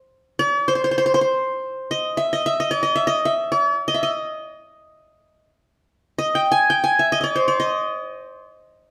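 Festive and stately, this excerpt from an Arabic maqam ensemble piece unfolds in free time, with a solo qanun entering at 0.4 s and carrying the melody until 8.9 s. Sitting up front, the qanun's triple strings and fingerpicks give it a bright-edged sparkle within a high, narrow range. A moderate stone room reverb surrounds the live performance, lending the instrument a spacious, resonant tail.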